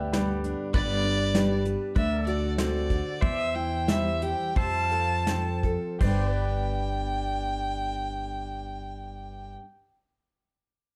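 A dark, warm studio sound with moderate reverb frames this short cut from a longer honky-tonk and classic country piece, and its mood is sunny and down-home. A bright, brilliant concert grand piano opens with a fill over the first 0.7 seconds. The band then slows over the following stretch to 6.0 seconds. A dark, woody fiddle carries the melody up front with light vibrato and a plate reverb. A picked dreadnought steel-string acoustic guitar adds bright accompaniment with audible finger squeak. The piano's deep bass sits beneath its sparkle, and a thumpy gut-string upright bass is plucked underneath. In the background, a clean, compressed pedal steel guitar holds sustained chords with volume swells and slide, while an airy, polished brush drum kit with a tight kick and medium-tuned snare plays until 6.2 seconds, leaving the rest of the band to ring on past 9 seconds.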